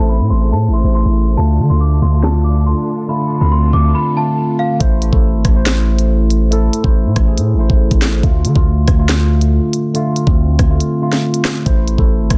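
Cold and ominous, this drill-style hip hop fragment, cut from a longer piece, moves at 140 BPM in a half-time feel in A minor, its chords shifting between Am and Dm. For the first 4.8 seconds a worn, slightly out-of-tune celesta carries a delicate, bell-like melody with tape echo, set in a boxy small room, while a clear symphonic string section holds lush, bowed chords with vibrato in the background, both under a filter sweep. A mellow tine electric piano with phaser plays accompaniment throughout, clean and up front, and a deep, sine-like 808-style bass with a fast attack and long decay sits forward in the mix from the start. The electronic drill drum kit enters at 0.3 seconds with a knocking kick, sharp soft-clipped snare, crisp hi-hats, handclaps and rim clicks, and a break arrives at 10.8 seconds before the return to Am at 11.7. The dry sound, low-pass filtering and dense, heavily limited master give the track a close, pressing weight.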